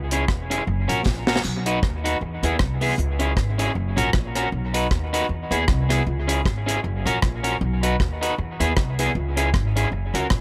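A swung, bouncy ska groove at 156 BPM in 4/4 drives this cheerful B major cut from a longer piece, with an upright bass played pizzicato, woody and growly, sitting up front in the low register while a deep reggae drum kit, dry with dark cymbals, a tight kick and rim clicks, drops a short fill at 1.1 seconds. An electric guitar at the edge of break-up adds twangy, fingered accompaniment, and both guitar and drums carry dub echo. The chords cycle through C#m, F#, B and E under a light reverb.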